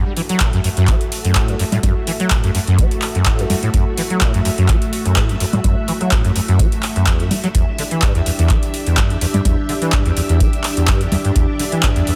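A lush string machine and a squelchy sawtooth acid bass open together, the strings holding slow-swelling sustained chords between A3 and E5 while the bass cycles a resonant riff from E2 to F#3. This is hypnotic, driving acid house at 126 BPM in 4/4, with a light 54% swing on the sixteenths and a dark F# phrygian colour, moving from F#m7 to Em7 at 7.5 seconds. The bass sits up front, its overdrive, ensemble chorus and gritty 12-bit sampler texture giving the filter-swept line a raw bite, and both bass and strings breathe with sidechain pumping. A booming analog drum machine joins at 0.2 seconds with congas, handclaps and metallic hi-hats, and a deep, tape-warm electronic kick lands at 0.4 seconds. Light reverb and digital ambience frame the mix in this short cut from a longer track.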